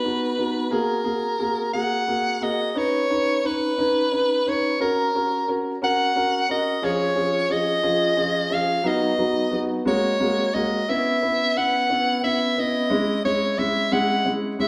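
A bright soprano saxophone carries the melody up front in this heartfelt, swaying pop excerpt, its punchy, present tone colored by vibrato as it sings between A#4 and F#5. Beneath it, a concert grand piano provides the accompaniment from 0.0 to 14.7 seconds, offering deep bass, an open character and long sustain. The pace is slow, 59 beats per minute counted in dotted quarters in a straight 6/8, and the music sits in B major. After a brief opening, a new section begins at 2.8 seconds, moving through add9 colors, a C#/E# chord and a C#m7 before settling on E6. The two players sound as if performing live together in a stone room whose wet reverb lends a lingering glow.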